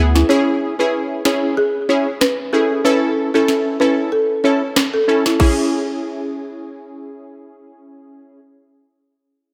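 Hypnotic and tough, this dancehall groove in C# minor moves at 94 BPM with a lightly swung 16th-note feel, drifting between C#m and A in a dreamy mix soaked in plate reverb. A punchy, brassy sawtooth synth stab with detuned chorus and a bright filter pluck carries the accompaniment throughout, while a woody, rustic folk marimba played with medium mallets sings the melody through tape echo. An electronic island pop drum kit, with a tight kick, sharp snare, rim clicks and crash cymbals placed up front, drives the first section before dropping out at 5.6 seconds in this fragment cut from a longer piece.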